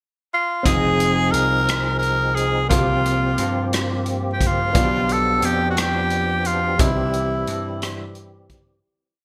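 Fervent and solemn, this short, complete slow gospel piece moves at 59 BPM in a straight 6/8, set in F minor. A breathy tenor saxophone leads from 0.3 seconds, sitting up front with an edgy, raspy grit and vibrato as it shapes a pop-style, motif-based melody in song-like phrases. Beneath it, a concert grand piano stays in the background with close-voiced held chords, grace notes, audible action noise and a subtle chorus, while a percussive tonewheel organ adds fat, lightly overdriven held chords in drop-2 voicing, with key click, third-harmonic percussion, chorus vibrato and a slow rotary speaker. A vintage slap bass plays a round, punchy gospel line, and a big-band drum kit of hi-hat, boomy kick and rim click keeps a slow six-eight groove, its roomy, distant sound shaped by gated reverb. After a short pickup, the verse moves from Fm7 through C7sus4 and G7/B to a closing C chord, fading out from 6.8 seconds within a lush hall and a bright 1980s-style digital production.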